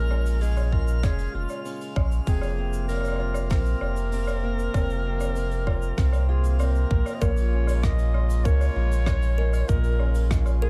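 A straight 4/4 pulse at 97 BPM comes from a tight electronic kick and a soft, dark brush kit of hi-hat, rim click, shaker and woodblock, above a deep, round sine sub bass, in this delicate, intimate folktronica piece in Bb minor. A jazz-style clarinet sings the melody with vibrato and scooped notes through tape echo, over a reedy, breathing harmonium and a boxy fingerpicked swing-style acoustic guitar with audible finger squeak, as the chords move from Bbm7 to Fsus4. A sparkling granular shimmer glints in the background until 7.2 s, when a woody, hollow kalimba takes up a short second line, also with tape echo, in this dry, close-sounding cut from a longer piece.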